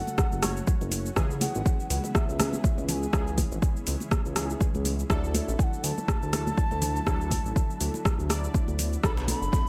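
A dry, tight-sounding mix carries this hypnotic, driving afro house excerpt, with an overdriven electronic kick drum up front and a smooth, detuned synth bass pumping against it. A deep house kit of metallic hi-hats, rim clicks and shaker, re-recorded in a large room, sits over damped, high-tuned congas, while round analog key stabs with chorus, phaser and delay and a very quiet, warbling ethereal pad fill the background. A bamboo-toned bass bansuri carries the melody over an F#m, C#m7, Dadd9 and Bm7 progression, its tongued, unsteady vibrato close-miked and echoed by digital delay, and a distant, rattling djembe slips in at 9.2 s.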